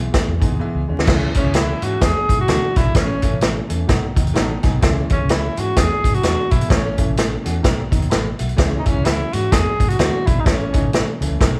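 Vinyl crackle and light reverb give this uplifting 1960s-style soul clip, cut from a longer piece, the feel of a band playing live in one room, with a swung groove driven by an up-front vintage kit of punchy kick, medium-tuned snare, hi-hat and dark crash cymbals. A round, foam-muted fingered electric bass sits in the background under a warm concert grand piano whose audible action noise and short sustain color the accompaniment, with piano fills at 3.4 and 7.9 seconds. From 1.4 seconds a breathy tenor saxophone takes the melody up front, its whispered subtone, vibrato and scooped notes lending the tune a mellow jazz flavor.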